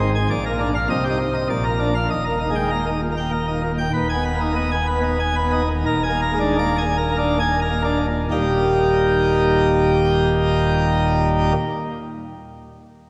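A pipe organ on full plenum opens this jubilant classical toccata in triple metre, its bright mixtures and baroque voicing sitting up front with a crisp chiff as it plays alone from 0.0 to 11.5 seconds. The music broadens into a slowing passage from 3.0 to 8.3 seconds, moving through a dark minor-tinged harmony before settling home. A wet church reverb surrounds the organ, and the whole sound carries the worn, warbling pitch drift of old cassette tape in this fragment cut from a longer piece.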